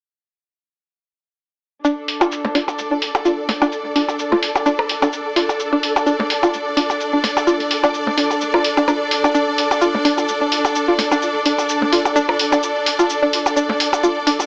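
A 4/4 pulse at 128 BPM, with 55% swing on the sixteenths, is carried by an electronic cabasa and hi-hat that enter at 1.8 seconds, analog in character and re-recorded in a small room, softened by low-pass filtering on the percussion, hats and room. This minimal techno piece, cut from a longer work, feels clinical and sparse, and electronic percussion blips join at 2.2 seconds, repeated through tape echo. A twangy, full-bodied resonator pluck plays a riff between D4 and F4, its fast, decaying sawtooth attack edged with a noise layer, brightened by chorus and tape echo. A rich studio string section sits up front, bowed with smooth vibrato and spanning D4 to D5 as an even, lush ensemble texture. From 2.5 seconds a flickering, grainy granular layer hovers in the background on A4, built from detuned triangle tones with a slow attack and long release in its own reverb. The whole mix has light reverb and a dry, gritty hardware sound, like playback through a small speaker, tuned to A4 = 439 Hz.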